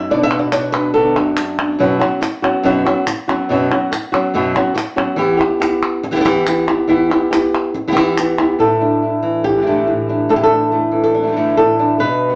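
A lively studio reverb with a dark top end frames this intense, dramatic flamenco fragment at 141 BPM, tuned slightly sharp to A4 = 445 Hz. An up-front fingerpicked nylon-string guitar carries the melody with fresh strings and audible finger squeak, while a second, boxy-sounding guitar adds fingerpicked chordal stabs at the opening and again from 8.6 seconds. Crisp, close and dry palmas hand claps drive the middle stretch from 0.3 to 8.6 seconds over a progression moving from Bm through F#sus4 and Em to Asus4.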